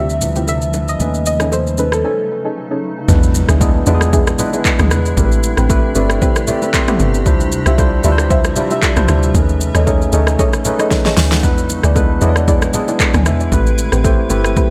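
Swung sixteenths at 115 BPM in 4/4 drive this deep, soulful amapiano excerpt: a punchy, overdriven deep house kit sits up front over very quiet congas and bongos, while a worn, slightly out-of-tune tine electric piano, a cloudy granular pad in the background and soft, nasal chord stabs move through Dm11, B13, E7 and Am9; a gentle, wave-folded pluck melody and a round fingered electric bass open the piece before a break, and at 3.1 s the drop arrives with a very quiet electronic impact and a dark, percussive FM log drum bass, followed by an electric piano fill at 6.2 s and a drum fill at 10.9 s.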